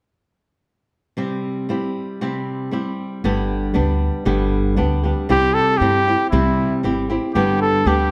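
A fingerpicked, up-front acoustic flamenco guitar opens this proud, festive mariachi fragment in C major at 117 BPM in 2/4, joined at 3.2 s by a dark, woody pizzicato upright bass on steel strings, before a classical-style solo trumpet steps up front at 5.3 s with a clear tone and light vibrato, all captured by close, detailed microphones in light reverb.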